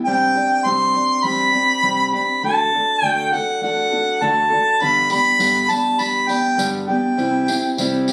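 Nostalgic and peaceful, this short acoustic folk passage in G major moves at an easy 101 BPM in straight 4/4, with a distant, roomy harmonica carrying the melody in a light-vibrato, classical style through plate reverb over a full-bodied picked steel-string guitar whose fresh strings and finger squeaks sit up front, while a close, jingly tambourine joins at 4.8 s, all captured on a phone in a modest studio room.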